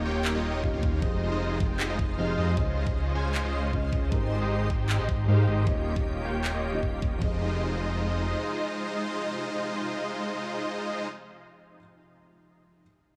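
Lush, up-front supersaw chords and a thick, saturated detuned saw bass pump against a knocking electronic kick and handclaps in this dreamy, bittersweet half-time future bass excerpt at 155 BPM in F minor, where a filter sweep runs on the bass through 7.2 seconds while a felt-muted upright piano and a shimmering, ethereal ambient pad sit in the background over chords moving from Eb9 through Fm7, Dbmaj9 and Abmaj7, the piano lingering alone until 12.8 seconds.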